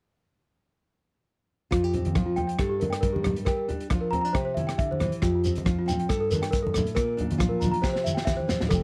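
Sunny and danceable, this short highlife guitar band excerpt moves at 137 BPM in F major with a lightly swung sixteenth feel, cycling through Fsus2, Gmadd9, Bb6 and C. Up front, a full-bodied, fingerpicked nylon-string guitar with audible finger squeak carries the accompaniment, while a bell-like, delicate celesta plays arpeggios with slapback echo over a crunchy, gritty breakbeat kit with a tight kick and a dark, rolled-off top, joined by bright, low-tuned congas played with soft hands. A grainy, mellow shekere comes in at 5.2 s, the drums play a fill at 7.8 s, and a round fingered electric bass sits in the background at 8.7 s, captured in a dry, close 1970s-style studio sound.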